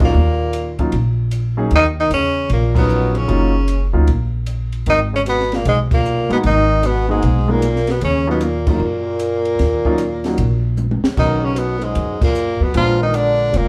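Swinging and cool, this small-group jazz excerpt in a swing-and-bop style is cut from a longer piece. A clear, up-front tenor saxophone carries the melody with light vibrato and scooped notes over a forceful, vintage-toned trombone second line, while a polished grand piano comps and a woody, thumpy pizzicato upright bass on gut strings anchors the bottom. A compact cocktail kit with dark cymbals, a high-tuned snare and a punchy kick adds a short fill at 10.8 seconds between the band's accents, and the whole group sounds heard from further back in a small, reverberant room.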